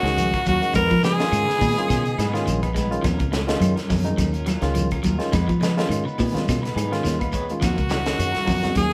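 An afrobeat excerpt in Eb minor at 105 BPM with a funky, driving swing opens with a raspy, gritty tenor saxophone carrying the melody up front over a breathy, whispered trumpet second line, both dropping out at 2.7 seconds and returning at 7.6 seconds, while a barky tine electric piano (with a fill from 6.5 seconds), clean tremolo guitar stabs, a slightly broken-up arpeggiated guitar, a round, foam-muted fingered bass, a tight funk kit with a high-tuned snare, and grainy shekere, ringing congas and woody claves groove over Ebm9 and Fm7b5 in a moderate stone room, as a band playing live together.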